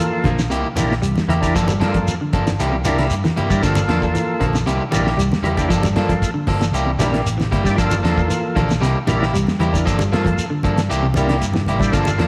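A moderate echo-chamber reverb and studio ambience surround this driving, intense afrobeat excerpt, cut from a longer piece and built on a straight 4/4 groove that alternates between a rootless Gm9 and C7 throughout. A damped 70s drum kit sets the foundation with a dry, dark sound, a fat snare, a tight kick, hi-hat and a rolled-off top, while a picked electric bass, amped and warm, joins at 0.2 seconds. Up front, an electric guitar at the edge of break-up plays slightly broken-up picked stabs, and a clean electric guitar with subtle chorus picks arpeggios further back in the mix. An overdriven tonewheel organ fills out the accompaniment with a full, thick, percussive tone, third-harmonic percussion, vibrato and a slow rotary speaker. Low-tuned congas with a thick skin, played with soft hands and very quiet, and a grainy, mellow shekere add acoustic percussion, the shekere entering at 0.3 seconds.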